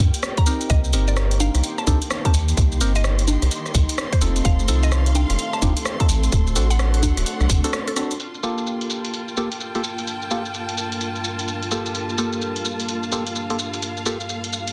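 A smooth analog pad and dark, lush bowed strings open this late-night, soulful two-step garage piece, together with a rubbery, saturated square bass and a tight, layered kick. Almost at once they are joined by a tape-warm drum machine playing congas, hi-hats, rim clicks and shaker, a woody mallet-like pluck melody with tape echo, and a hollow, percussive organ stab treated with phaser and delay. Bass and kick drop out at 7.6 seconds for a short break and band accent, and from 8.2 seconds the pad carries a filter sweep while the strings, drum machine and organ continue over a Gm9 chord, all within a dense, heavily limited mix with light reverb and sidechain pumping on the pad and strings.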